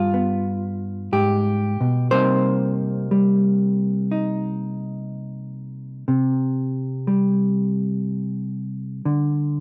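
Swinging and moody, this short solo jazz excerpt features a lone hollow-body electric guitar, dark and clean, fingered and sitting up front with a slapback echo on its tone. Over a slow swung 4/4, the guitar moves from a G7b9 chord to Cm7 at 2.1 seconds, ranging from G2 up to C5. The sound is dry and open-air, with little reverb and the feel of an outdoor performance lacking any room ambience.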